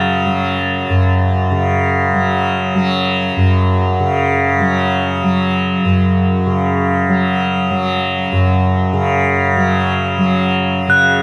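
World meditative music in a spacious, meditative mood, this brief excerpt sets a softly plucked, buzzing, warm tanpura drone up front throughout, while bright, bell-like crotales struck with brass mallets ring high and shimmering in the background, the recording steeped in a huge, wet ambient reverb.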